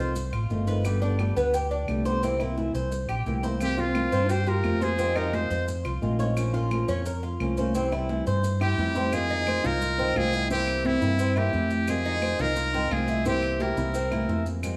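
A straight 4/4 pulse at 174 BPM drives this nostalgic, sultry slice of Cuban son and guajira in F minor, cut from a longer piece. The round, dark fretless electric bass sits up front, while bright, high-tuned congas with hard hands, woody claves and grainy maracas patter in the background. A fingerpicked flamenco guitar and a picked Cuban tres, whose metallic double strings weave arpeggios, fill in the harmony through changes such as C7sus4, Fm7 and Bbm. Up front, a buzzy, breathy trumpet with a metal mute carries the jazz-style melody from 3.6 seconds and again from 8.6 seconds, shadowed by a dark, classical nylon-string guitar on a second line in the background. A drum fill at 14.1 seconds closes the second section, and a wet large studio reverb surrounds the small room ambience.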